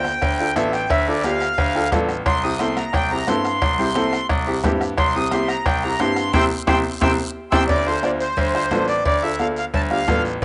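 A straight 4/4 cumbia groove at 176 BPM drives this short, joyful and sunny cut from a longer latin piece, anchored by a close bombo played with a soft beater. A reedy accordion with slow beating sits up front and carries the melody as a solo through the first 7.7 seconds, over chords moving from D minor to C. A bright grand piano, brilliant and natural with short sustain, also sits forward and handles the bass, while a clear, worn and woody upright piano, slightly detuned and open, supplies accompaniment and drops in a fill at 1.6 seconds. Further back, high-tuned congas with a thin skin and hard hands and ringing metal-shell cowbell and timbales fill out the percussion, joined by a raspy guiro heard close and dry. A band accent from 6.3 seconds, joined by a drum fill at 7.0 seconds, leads to a new section and a return to D minor at 7.7 seconds, all heard through light small-room reverb and the dull, homemade tone of a cassette recording.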